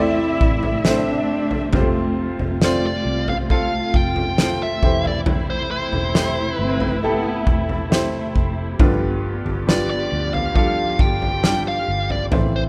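This slow, heartfelt pop ballad, cut from a longer piece, rests on a loose, straight groove from an acoustic drum kit that comes in at 0.4 seconds, its punchy kick, fat snare and toms sitting up front. From the very start, a round, foam-muted fingered electric bass holds the low end while a clear, woody upright piano carries the accompaniment, its action noise giving it an intimate presence. A distant string section sustains lush bowed chords, and a smooth cello section in the background adds a second line with vibrato until about 9.4 seconds. At 2.6 seconds a dark, overdriven, picked lead guitar enters with the melody, lending the piece a hopeful edge. The chords move from Am through F and C6/E to G7, and light reverb with studio ambience gives the piece a rough, home-demo feel.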